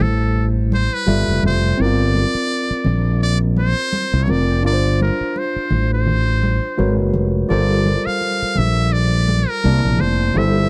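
R&B and neo-soul at 84 BPM in G dorian, introspective and late-night, with a lightly swung 16th-note feel across this 10.7-second fragment of a longer piece. A buzzy, thin metal-muted trumpet carries the melody up front with light vibrato and scooped notes over clean tine electric piano chords that move from Am7 through G13 and Abm11 to C13. A punchy, direct fretless bass sits prominently underneath, and damped, thick-skinned congas stay in the background of a dry, close 1970s-style studio sound marked by lossy compression artefacts.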